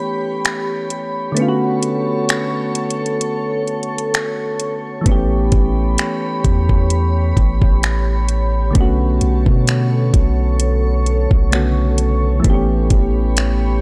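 Contemporary R&B at a slow 65 BPM in B minor, this late-night, longing excerpt sits in a dark, warm digital ambience with a gentle swing on the sixteenths. Soft, round electric-piano-like synth keys carry the accompaniment from the start, their mellow, chorused tone sitting up front as the harmony moves between A9 and Bm9. Above them, a glassy, ethereal FM pad holds sustained chords with a slow attack and long release, washed in ensemble chorus and built-in reverb and breathing with sidechain pumping. An electronic drum kit enters at 0.4 seconds with finger snaps, metallic hi-hats and a knocking kick, placed up front in the mix. The opening stretch plays as a break until a deep, sine-like 808-style bass arrives at 5.1 seconds, its long, decaying notes anchoring the low end through the close of the cut-out section.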